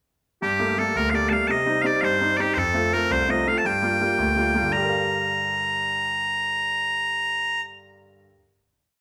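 Bagpipes and a concert grand piano open together at 0.4 seconds in this spirited, wild Celtic jig in G minor at 112 BPM in 6/8, the piercing, up-front pipes carrying a continuous motif-based solo melody in period phrases over the brilliant piano's deep bass notes and oompah chord figures through Gmadd9, Cm, F and Gm7, before a final chord from 4.7 seconds rings in a moderate stone-room reverb with the band playing live together and the piano sounding on until 8.4 seconds.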